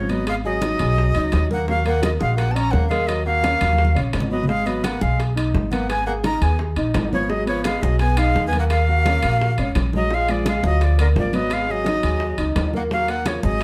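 Heard from further back in a moderately reverberant studio, this fiery, sultry stretch of Afro-Cuban jazz is led up front by a breathy, chiffy metal flute carrying the melody, joined by a smooth-topped tenor saxophone with vibrato on a lower second line. A mellow, vintage grand piano with audible action noise accompanies over chords such as Abm9, Ebm9 and Bb7b9, while a woody, thumpy pizzicato upright bass sits prominently at the bottom. Damped congas and tight, high-tuned bongos sit in the background alongside ringing metal-shell timbales, and a drum fill arrives from 3.6 to 4.5 seconds.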